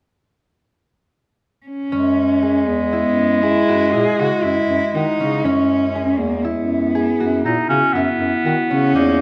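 A dark, bowed cello opens the melody at 1.7 s, sung up front with expressive vibrato and portamento. At 1.9 s the others join over an F#9sus4 chord: a clear clarinet carries a second line, a mellow bass clarinet holds the bass, and a fingerpicked concert harp adds ringing arpeggios. This playful, hopeful chamber excerpt in 7/4 at 120 BPM sits in a moderate recital hall reverb and runs to 9.2 s.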